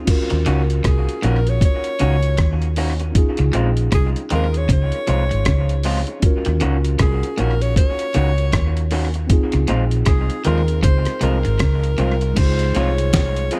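Bittersweet and smooth, this lovers rock reggae cut from a longer piece moves at an unhurried pace with a swung sixteenth-note lilt, circling between two chords. A gritty, sampler-style drum kit with a thumpy kick, fat snare and tape echo sits up front alongside a dark, round, foam-muted electric bass, together carrying the weight of the groove. A mellow tine electric piano supplies clean accompaniment from the opening moment, while a twangy, scooped electric guitar plays a low riff with tremolo in the background and a second guitar through a small old amp adds slightly broken-up, lo-fi stabs with tape echo. From 0.9 seconds a clear alto saxophone takes the melody in a jazz style, close-miked with a soft attack and light vibrato, its line touched by tape echo. The sound is dry and intimate, with little reverb, and a brief new section arrives at 12.4 seconds just before the clip ends.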